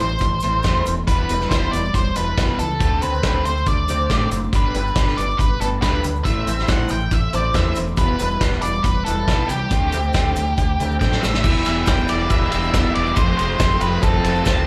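An up-front, dark octave-fuzz lead guitar carries the melody over bright overdriven garage riffs, a lo-fi guitar through a small old amp, a growling overdriven bass, a loose punchy drum kit and a grainy tube shaker in this cool, moody indie rock excerpt heard as a live gig through a club PA, with a drum fill at 11.0 seconds ushering in a soft, flute-like tonewheel organ on slow rotary as the chords shift from Em7 to Fadd9.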